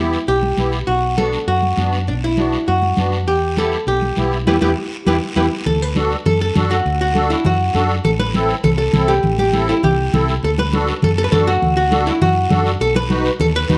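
Cumbia with a driving, passionate energy, this excerpt features a dark, clean archtop guitar carrying the melody up front with plate reverb, over a reedy, shimmering musette accordion and a round, punchy hollow-body electric bass. Raspy guiro enters at 0.1 seconds and thick-skinned, damped congas sit in the background from 0.4 seconds, all within a moderate large-studio ambience. The band hits an accent from 4.5 to 5.7 seconds before moving into a new section that runs from D through A minor and back to D to close on B.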